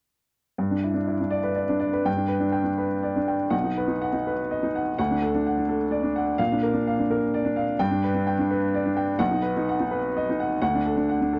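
A rubato 3/4 pulse around 126 BPM carries this hopeful, peaceful neoclassical minimalist piano piece in G major, tuned to A4 = 442 Hz and taken from a longer work. A lone upright piano plays from 0.6 to 11.4 s across B1 to G5, its woody, boxy tone sitting up front with long sustain and audible action noise, moving through G, B, D and Bb chords before circling back to G, B and D. The dry, close 1970s-style studio sound keeps the instrument intimate and clear.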